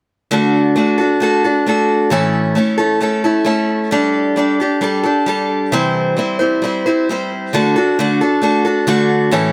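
A moderate studio reverb frames this short rock excerpt, where a lone picked steel-string acoustic guitar sits up front with a woody, boxy parlour tone, the warm ring of old strings and a touch of tape echo. At 133 BPM in straight 4/4 and D major, tuned to A4 = 435 Hz, the guitar plays from 0.3 seconds, moving through D, A, Gsus2 and C before a new section returns to D at 7.5 seconds. The mood is nostalgic and hopeful.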